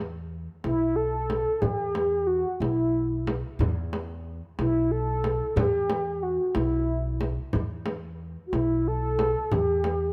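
Festive and warm, this short excerpt from an Arabic maqam ensemble piece in E maqam suznak moves at a slow 61 BPM in a straight 6/8, with a woody pizzicato upright bass opening at 0.0 s before a round, warbling, horn-like synth lead with chorus and vibrato carries the melody from 0.6 s over a small, bright frame drum played with soft hands, all set in light reverb and studio ambience in a rough home demo mix.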